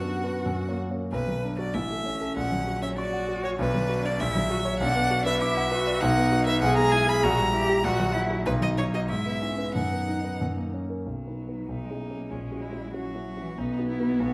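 Heard in a reverberant recital hall, this urgent, dramatic excerpt from a quick classical-period piano trio movement in 2/4 at 89-100 BPM, played with rubato, sets a rich, close, vibrato-laden violin on the melody over a smooth-topped bowed cello line and a dark, deep-bassed concert grand accompaniment, moving from B minor to B major at 6.0 s.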